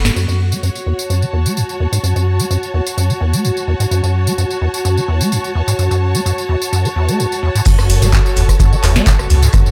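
A rubbery, resonant acid bass riff with overdrive and ensemble chorus sits up front in this playful, raw acid house excerpt at 128 BPM, over a booming analog drum machine with crisp snare and metallic hats, a distant, lush bowed string section, and a warbling, lo-fi tape-like pad that sustains chords under a filter sweep before the drop at 7.7 s brings in a deep electronic kick, a very quiet shaker and snare, and from 7.9 s a thick, mellow saturated sub bass that pumps along with the strings and pad.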